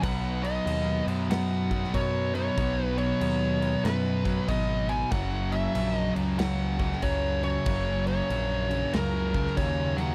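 A swung 4/4 groove at 94 BPM drives this heavy, hypnotic stoner and doom metal excerpt, where a dark, up-front fuzz lead guitar with slapback echo carries the melody over two thick fuzz guitars riffing in the background, a tight, double-tracked distorted guitar, a growling overdriven picked electric bass and a big acoustic rock kit with punchy kick, medium-tuned snare and bright cymbals, in a dry, close 1970s-style studio sound as the harmony moves from B to F# at 5.1 seconds.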